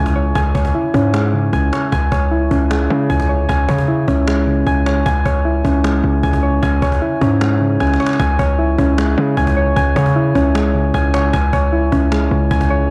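A half-time trap pulse at 153 BPM in 4/4 drives this eerie, brooding hip hop piece in C# minor, cut from a longer work and resting on a C# minor chord. A woody, acoustic cajon with faint snares sits distant and lower in the mix, as if heard in a large room, and it plays a short fill from 7.8 seconds that carries the music into a second section at 8.2 seconds. Up front, a hard-hitting 808-style bass lands punchy and heavy, with a sine core, a noise layer and a fast attack that decays. Soft electric-piano-like synth keys spin arpeggios across a broad register; their round, full-bodied, vintage tone warbles through chorus, a low-pass filter darkens them, and an analog delay trails them. The dry mix carries the character of cassette tape, and it opens with a break that lasts until 1.9 seconds.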